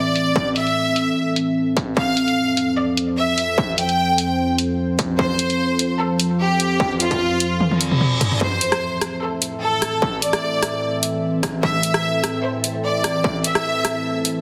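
Menacing and heavy, this short cut from a longer wobble dubstep track moves at 149 BPM in a swung half-time feel in A minor, shifting between Am and F chords. A biting violin section carries the melody with light vibrato and digital delay, while an evolving, warbling wavetable pad holds sustained chords with chorus and sidechain pumping, and a filter sweep runs across both the pad and the drums. A dubstep kit with bright, filtered hats, rim clicks and toms sits over a distorted electronic kick, and a drum fill with a reverse cymbal near 7.7 seconds leads back to Am in a dense, heavily limited mix with moderate plate reverb.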